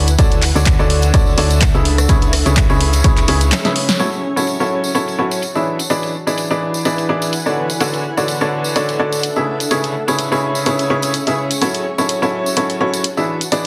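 A dense, heavily limited modern mix sits in a moderate digital room, framing this soulful, bittersweet piano house excerpt at 126 BPM in F# minor, with a light swing on the 16ths. A bright, woody, slightly detuned upright piano carries the riff up front throughout, its short-sustain chords pumping against the beat and trailing a dub echo through a low-pass filter. A round, dark FM bass anchors the low end for the first 3.5 seconds, joined until about 3.1 seconds by a punchy electronic kick re-recorded in a large room, before a drum fill at 3.5 seconds and a band accent at 3.9 seconds mark the turn into the second section. Throughout, the analog drum machine's handclaps, hi-hat, rim click and softly clipped snare run alongside a tambourine, with a filter sweeping across the drums from 4.0 seconds, while a blurred, evolving granular pad glows in the background. The chords move from Dmaj7 and C#m7 to F#m7 and E7, giving the groove its wistful lift.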